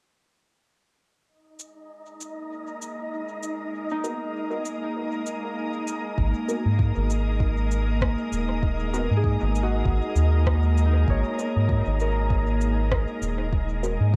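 A round, deep analog bass sits up front once it arrives at 6.2 s alongside a soft, overdriven electronic kick, anchoring this spacious, meditative ambient dub piece cut from a longer work. Before that, an electronic cabasa and rim click enter at 1.6 s with a gritty cassette-tape tint and dub echo, while a wind-like noise texture adds an airy, breathy layer. A calm, organ-like pad gradually fades in, entering at 2.6 s and holding sustained chords with ensemble chorus and its own reverb. Soon a fingerpicked Celtic harp rings out arpeggios through tape echo, and a muted, detuned sawtooth chord stab with phaser and lush chorus drifts in the background, its decaying hits repeating through dub echo. The groove carries a gentle swing on the sixteenths in 4/4, and the whole recording has the dry, intimate character of a home cassette recording.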